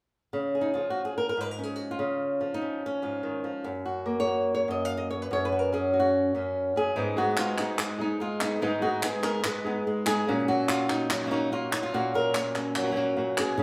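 A fingerpicked flamenco guitar with a warm tone and fresh strings opens at 0.3 s, carrying the melody up front in a proud, fiery flamenco passage at 145 BPM in straight 4/4, in F# major and tuned to A4 = 444 Hz. The opening moves from C# to F#. At 7.0 s the harmony shifts to G#m and later F#/A#, and a second fingerpicked flamenco guitar joins with stabs, its sound marked by audible finger squeak. Palmas hand claps arrive at 7.4 s, crisp, close and dry, sitting up front beside the lead guitar. The trio plays live together in one room, wrapped in a large studio reverb, and the passage is cut from a longer piece.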